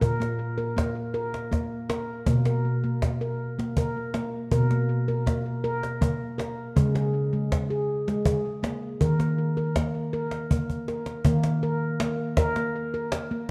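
Hypnotic and gentle, this short world-meditation passage, cut from a longer piece, drifts at a slow 53 BPM in a straight 6/8. A close-miked handpan carries the music with ringing arpeggios of nitrided steel played with the fingertips, spanning Bb2 to Bb4 with a full, up-front presence and a touch of tape echo. A woody acoustic cajon with faint snares sits just as close, keeping a pulse beneath it. The harmony settles on Db5 at 6.8 s and moves to Eb5 at 9.0 s, and a brief cajon fill at 10.7 s ushers in a new section. The whole has the soft grain of cassette tape, wrapped in a lush scoring-stage reverb with a small-room ambience.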